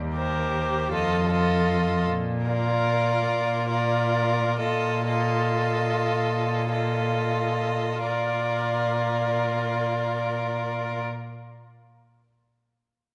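In a rubato 6/8 at 29-53 BPM that slows between 0.9 and 8.0 seconds, this serene, warm fragment of a slow romantic string quartet movement in Bb major moves from Cm7/Eb through F7 to Bb, with a clear, intense first violin singing the melody over a focused second violin line, a smooth, distant viola accompaniment and a rich, up-front, expressive cello bass with soft attacks and portamento, each part bowed with vibrato in a wet scoring-stage reverb.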